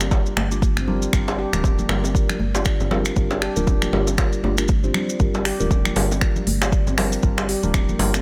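A deep, up-front electronic kick drives this earthy afro house excerpt at 118 BPM in G minor, with a 16th-note swing and tuning at A4 = 438 Hz, all resting on a single Gm7 chord. A round, woody FM bass pumps against the kick, while a mellow tine electric piano plays stabs through phaser, low-pass filter and delay. A ringing, meditative handpan enters at 0.8 seconds with delayed arpeggios. Crisp electronic hi-hats and finger snaps, a hard-handed vintage djembe, bright background congas and grainy, dry maracas fill out the driving groove in a small room ambience.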